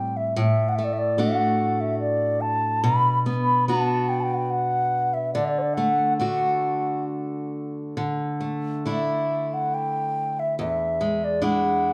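A baroque flute and a picked steel-string acoustic guitar sound together from the opening moment of this haunting, longing Celtic slow air, moving in a loose, rubato three-beat feel through a brief excerpt cut from a longer piece. The flute carries the melody with a pure, wooden tone, vibrato and soft attacks, while the dark, up-front guitar accompanies beneath it through chords from D over A to Bm, D, Dsus2 and finally E7 at 10.6 seconds. The two play live in one room, surrounded by a moderate large-studio reverb.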